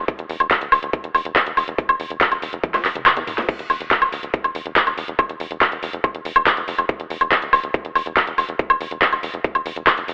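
Psychedelic trance at 141 BPM in a straight 4/4, this short excerpt cut from a longer piece feels driving and intense. A tight sequencer bass runs throughout, its nasal sawtooth and square-wave tone shaped by a filter pluck with a fast attack that decays into something mellow, evolving as it punches along low in the mix. Up front, a layered electronic kick drum hits tight, with a small-room character from being re-recorded. Beside it, an overdriven drum-and-bass kit brings a cracking snare, bright hats, handclaps, toms, woodblock and crash cymbal. A drum fill arrives at 2.6 s, and the kick drops out from 3.1 s to 3.5 s before returning. The whole thing sits in a lush hall reverb and carries a telephone-like coloring.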